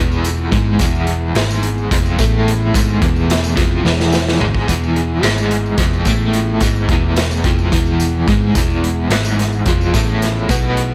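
Driving along at 217 BPM in a straight 7/8, this hypnotic, dark psychedelic rock excerpt in E major rides a crunchy, double-tracked overdriven guitar riff soaked in tremolo and tape echo over a round, hollow-body picked bass, a raw garage drum kit with a boomy kick, gritty saturation and a rolled-off top that throws in a fill at 3.8 seconds, a jingly vintage tambourine with its own tape echo, and soft, flute-like tonewheel organ chords churning through a fast rotary speaker in the background, all in a dry, echo-heavy mix.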